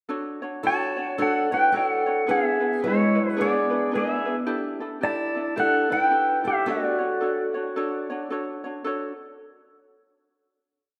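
A light, fingerpicked ukulele opens at 0.1 s with eighth-note strumming in open chord shapes, and a fingerpicked steel-string acoustic guitar with fresh strings and audible finger squeak joins at 0.6 s, carrying a harmony line mostly in thirds. Up front, a clean, compressed electric pedal steel guitar sings a dreamy, motif-based melody in period phrases, played with fingerpicks and slide, with volume swells and tape echo, partly doubled in sixths, over a gently swung Dmaj7, E7 and A7sus4 progression. This whole languid Hawaiian piece sits in a lush, wet hall reverb with a rough home-demo mix, and it closes on a final chord at 8.8 s.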